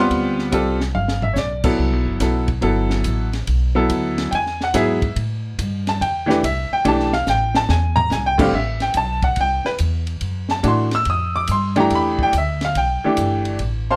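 Late-night and swinging, this short excerpt from a longer small-group swing and bop piece features a bright upright piano comping up front, its brilliant, intimate tone carrying audible action noise. Beneath it, a woody, thumpy pizzicato upright bass with steel strings sits close, while a compact cocktail kit with a high-tuned snare, tight kick and rolled-off top works ride, hi-hat, crash and toms, adding drum fills at 1.0 and 7.3 seconds. A moderate small-room reverb wraps the trio as the harmony moves through seventh, thirteenth and added-ninth chords.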